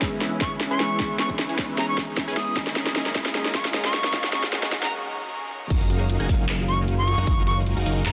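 Playful and bright, this future bass excerpt moves at 153 BPM in 4/4 with a half-time feel, cut from a longer piece and tuned to A4 = 438 Hz. A build-up opens the track, with a punchy, layered electronic kick and a trap kit of sharp snare, metallic hats, handclaps and crash cymbal playing a drum fill up front in a small room, while a sawtooth supersaw stab riff pumps against the sidechain under a filter sweep. A breathy, reedy jazz flute carries the melody from 0.4 s, its vibrato-laden line soaked in dub echo, over a very quiet airy pad holding sustained chords, a soft round pluck comping in the background through subtle chorus and digital delay, and a faint riser. After a brief break at 4.9 s, the drop lands at 5.7 s on a Gbmaj13 chord, bringing in a fat, detuned analog bass up front and a gentle, full-bodied pluck spinning arpeggios. A huge ambient reverb surrounds the dense, heavily limited modern master.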